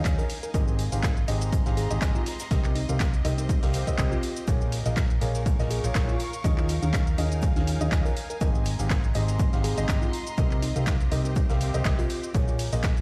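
Soulful and energetic, this piano house excerpt moves at 122 BPM in 4/4 with a light 16th-note swing, cut from a longer piece and sitting in a bare, stone-walled room sound. A boxy grand piano riff with short sustain and delay, a round, dark hollow-body electric bass and a lush, distant string section all pump against the up-front, tape-warm electronic kick, while a punchy analog drum machine adds cabasa, handclaps, hi-hat and ride, and a vintage kit with a high-tuned snare, shaker and hats sits softly in the background. A bell-like, sparkling FM electric piano with chorus and delay plays a mellow melody from 0.2 seconds over chords cycling through Abmaj7, Cm7, Bbm7 and Eb9sus4.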